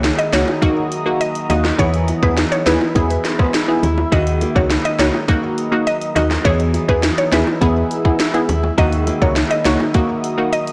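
Tough and sultry, this dancehall cut from a longer piece moves at 103 BPM in Eb phrygian, shifting between Ebm and E over an up-front island pop drum kit with a tight kick and sharp snare, a soft, round FM bass, and low-tuned bongos tucked in the background. Punchy, warbling sawtooth chord stabs pump against the beat alongside a deep, moody pad with a slow attack, while a bright nylon-string guitar fingerpicks arpeggios through digital delay, finger squeaks audible. A woody, percussive mallet-like synth pluck carries the melody from 0.2 seconds, all heard through a blown-out, overdriven recording with light reverb.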